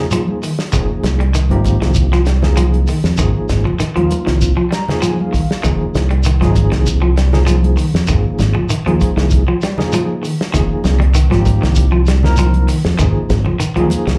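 Afrobeat at 98 BPM in F minor, this short cut from a longer live piece has a defiant, driving mood, heard through a club PA with light reverb. A round, punchy fingered electric bass sits up front, entering at 0.7 seconds and anchoring the groove between F1 and F2 as the harmony moves between Ab5 and Fm9 or Fm7 chords. A dry, damped 70s drum kit with a tight kick and medium-tuned snare holds the straight 4/4 feel, joined by bright, thin-skinned congas in the background and a grainy, mellow shekere played close. A barky tine electric piano, lightly overdriven through a combo amp with fast tremolo, carries the accompaniment and plays a fill from 4.4 to 5.6 seconds. Alongside it, a twangy, slightly broken-up electric guitar with tremolo picks arpeggios in a narrow low register.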